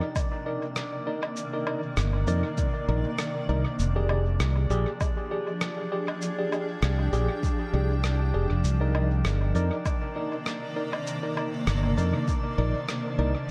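Deep and meditative, this ambient dub excerpt moves at 99 BPM in 4/4 with a light 16th-note swing, as a blurred, granular cloud pad holds sustained chords through Cm9 and Fm69 while a clean tine electric piano stabs through dub echo, a glassy harmonics texture drifts calmly in the background with chorus, muffled, pitched-down cabasa, woodblock and rim click carry their own dub echo, a deep, tape-warm electronic kick sits up front, and a bright, growly fingered electric bass joins at 2.0 seconds.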